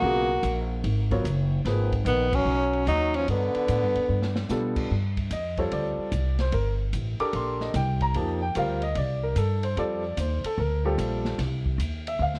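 Cool and intense, this short modal jazz excerpt swings at 148 BPM in 4/4, settling into C dorian from 4.9 s after opening on minor and dominant chords. A breathy, whispered tenor saxophone carries the melody up front through the first 4.5 s, with a bright, punchy trombone beneath it on a second line, its light vibrato touched by analog delay. A woody upright piano with long sustain comps briefly at the start, then returns at 4.5 s to carry the accompaniment to the close, while a dark, pizzicato upright bass plays throughout. An airy acoustic drum kit with dark cymbals and a boomy kick enters at 0.4 s, joining a band accent at 2.3 s and playing a fill just before the horns stop. Moderate spring reverb and small room ambience color the cassette-tape recording.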